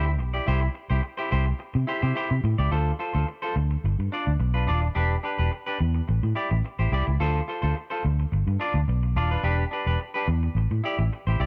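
A dark, round, foam-muted electric bass sits up front in this glamorous, sultry disco excerpt at 107 BPM in D dorian, with a clean, bright, twangy picked electric guitar providing accompaniment in the register above the bass. After an opening on C, the harmony settles at 2.7 seconds into a repeating Dm7, G7, Em7, Am7 cycle. The dry sound has little reverb and keeps both instruments present and immediate.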